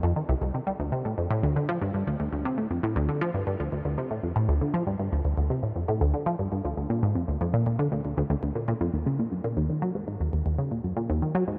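A straight, steady 4/4 pulse drives this expansive, hypnotic ambient piece, cut from a longer work, carried entirely by a tight sequenced synth that plays alone from start to finish in a low register. Its detuned sawtooth tone has a fast-attack filter pluck that still sustains, sitting up front and coloured by chorus, phaser and delay. A huge ambient reverb and the soft grain of cassette tape surround it, and the music moves into a new section at 8.9 seconds before breaking off at 11.6 seconds.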